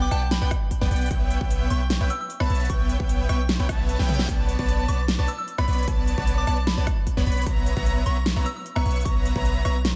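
A soft, pure FM bell melody leads this bittersweet, dreamy future bass excerpt. It sits high over an airy lead playing arpeggios, a huge, thick detuned supersaw riff and a deep, boomy 808-style bass, all four pulsing with sidechain pumping. A big-room dance drum kit with a huge snare, crisp hats, rim clicks and toms joins almost at once in a half-time feel, and a punchy, tape-warm electronic kick arrives at 0.5 seconds. The bell carries chorus, phaser and delay, the lead glows with chorus and vibrato, and the compressed supersaw trails a tape echo, all set in a light reverb. Around 3.8 seconds a very quiet reverse cymbal sounds as the kick briefly drops out and a drum fill lands at 4.0 seconds, before the harmony moves from Gmaj7/B and A7/B to Bm7 and finally Bsus24.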